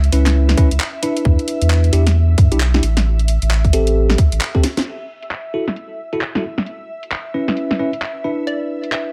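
Soulful and late-night, this two-step UK garage cut at 133 BPM in F# minor swings its 16ths over an ethereal, sidechain-pumped pad in ensemble chorus, a thick saturated sub bass and a tight, up-front electronic kick that stop by 4.6 s as a drum fill lands, a garage kit of cracking snare, handclaps, crash and filtered bright hats, bell-like tine electric piano stabs coloured by phaser and tape echo, and a hollow, detuned square-wave pluck that slips in at 8.5 s, the harmony moving through C#m7, Em7 and Am7 to F#m7.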